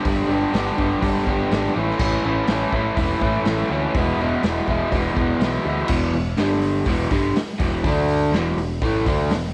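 Garage rock with a rowdy, swaggering strut, this short cut from a longer piece pairs an up-front, crunchy, double-tracked overdriven guitar riff with a growling, overdriven picked bass and a raw, gritty, saturated drum kit of punchy kick, medium-tuned snare, hi-hat and crash in a small room, moving from G, A and E chords into a run of E5, G5 and D5 power chords at 5.9 seconds.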